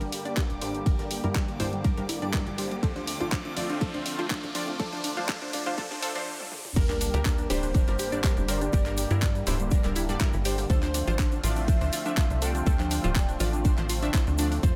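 Progressive house with a bittersweet, dreamy mood, cut from a longer piece: an up-front, punchy electronic kick sits under sidechain-pumped, evolving supersaw chords, tight detuned arpeggios with chorus and delay, bright phased unison pluck stabs and a saturated, wave-folded sequencer bass, while a reversed granular texture, a background riser and sub drop, a very quiet gritty low-tuned drum kit and a pop kit with handclaps, crash cymbal and toms build over filter sweeps to a brief stop and drum fill, before the drop at 6.8 s brings in a round, dark octave-layered synth lead with vibrato and a grainy egg shaker.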